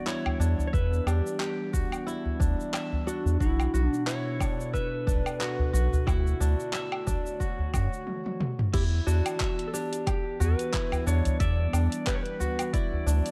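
A clean, compressed lap steel guitar carries the melody from the start with a sliding, fingered tone roughened by vintage 12-bit sampler grit and trailed by digital delay, over a warbling, nostalgic tape-like pad whose chorused, reverberant chords pump against the beat. This organic downtempo piece in E dorian moves at 90 BPM in 4/4 with a gentle 16th-note swing, its mood warm and mystical. A crisp, ringing kora adds fingerpicked arpeggios softened by a low-pass filter and delay, while a deep acoustic udu enters at 0.3 seconds and a round analog bass, sine-smooth and up front, arrives at 0.4 seconds with sidechain pumping. A tape-warm deep house kit brings cabasa, handclaps, hi-hat, woodblock, toms and crash, joined by a layered electronic kick with a small-room tail, and a drum fill at 8.1 seconds leads into a new section as the chords cycle through Em7, Bm7 and Dmaj7 back to Em7. The production is dark and lightly reverberant, and the passage is cut from a longer piece.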